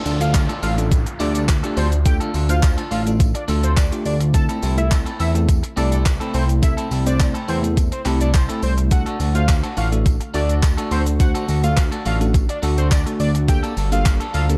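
Driving and bittersweet, this dance-pop excerpt in D minor moves at 105 BPM over an overdriven, gated 80s digital drum machine with a thumpy kick, handclaps, hi-hat and shaker, a fat sawtooth analog bass with sidechain pumping, and a very quiet, jingly tambourine. A bell-like tine electric piano and an evolving, detuned analog lead with filter sweep and vibrato, both pumping with the sidechain, sit alongside a twangy, slightly broken-up electric guitar riff bathed in lush chorus. An electronic downlifter stays in the background until 4.3 s, a shimmering, ethereal pad enters at 1.2 s, and the chords pass from Dm through Am/C and D to Gmadd9 in a dark, warm digital ambience.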